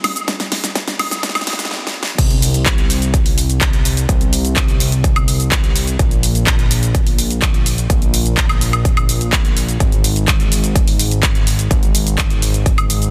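A fat, detuned sawtooth bass enters when the drop lands at 2.2 seconds, sitting up front with a fast attack, a decaying tail and sidechain pumping in a low register. This short cut from a longer festival progressive house track runs at 126 BPM in a straight 4/4, with a powerful, emotional mood. It opens with a brief build-up, where a layered pop drum kit starts at once with drum fills that bring in crash cymbal, handclaps, hi-hat, shaker, woodblock and a fat, up-front snare. A punchy electronic kick joins at 0.3 seconds, layered and re-recorded in a small room, with high-pass filtering on both the kick and its room sound. Light digital ambience surrounds the parts, and the dense, heavily limited master gives the whole piece a modern sheen.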